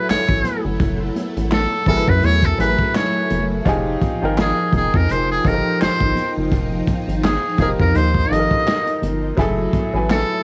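R&B and neo-soul at a relaxed 84 BPM with a sultry, introspective mood, this excerpt sets a buzzy, distant metal-muted trumpet melody with vibrato and analog delay over clear grand piano and shimmering string-machine violins with ensemble chorus, each carrying cassette tape grit, while a rubbery square-wave bass, a crunchy, saturated breakbeat kit of punchy kick, snare, hi-hat and handclaps, and very quiet high-tuned congas swing gently through F#m9 and Fm9 in a lightly reverberant home-cassette sound.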